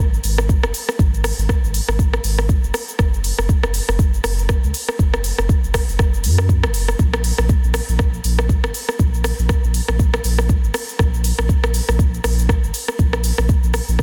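A round, sine-like sub bass opens this hypnotic, driving afro house fragment, its deep, sustained notes carrying a fast attack and a sidechain pumping effect. At 0.1 seconds an electronic afro-pop kit joins with cabasa, smooth hats and rim click, swinging on the 16ths in 4/4, and at 0.5 seconds a deep, up-front electronic kick enters to anchor the groove. The dry, dense mix is heavily limited in a modern, produced style.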